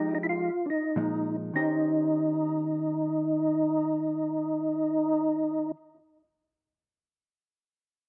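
A percussive tonewheel organ and a hollow-body electric jazz guitar open together in this brief, bluesy and soulful jazz fragment in free time, cut from a longer piece and centred on Eb mixolydian. The organ carries the melody up front within a narrow span from D4 to F4, its mellow, round tone marked by third-harmonic percussion, chorus vibrato and a slow rotary speaker. Beneath it, the fingered guitar supplies clean, compressed accompaniment with a dark hollow-body character, ranging from Bb2 to C5 and sitting well behind the organ in the balance. The harmony moves from Fm9 to Bb7sus4 before settling on Eb6 at 1.5 seconds, where a second section begins. The organ stops at 5.7 seconds, leaving the guitar alone until 5.8 seconds. Recorded outdoors with little reverb and treble that tops out at 10.6 kHz, the sound is dry and slightly muted.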